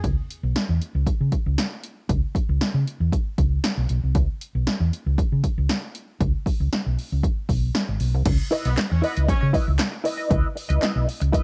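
A round, dark hollow-body bass, fingered and up front, drives this cool, funky excerpt over a punchy, tape-warm analog drum machine of kick, snare, hi-hat, handclaps and crash, with a short room on the snare, claps and hats. As the harmony moves from a dominant seventh to a minor ninth chord, a clean, compressed electric guitar with wah enters at 8.5 seconds, and a distant, roomy horn section with light vibrato adds a brief second line from 8.7 seconds. A crisp group handclap sits in the background from 8.8 seconds, and the mix carries little reverb.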